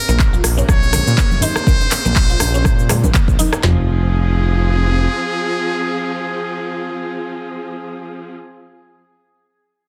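A dense, heavily limited mix with very little reverb gives this afro house excerpt a close, dry presence, set at 122 BPM in 4/4 with a light swing on the sixteenths and a spiritual, warm mood in F minor. The opening drop is driven by two layers of electronic afro-pop drum kit, with a deep kick, woody snare, handclaps and toms up front alongside crisp hats, rim clicks and shaker, all with a taped, small-room character, while bright congas and a deep, soft-handed djembe sit in the background. A smooth, sawtooth-and-triangle synth bass with tube saturation and sidechain pumping anchors the low end, and a round, mallet-like FM pluck with chorus, cassette grit and tape echo spins arpeggios behind it. Over a vibrato-rich studio string section holding sustained chords that move from Bbmadd9 to Fm, a muted trumpet plays a buzzy, breathy, jazz-style solo melody, its thin, brilliant tone trailed by tape echo. 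The drums and percussion drop out between 3.6 and 3.8 seconds and the bass stops at 5.1 seconds, leaving the pumping strings and the trumpet to carry the passage to its close.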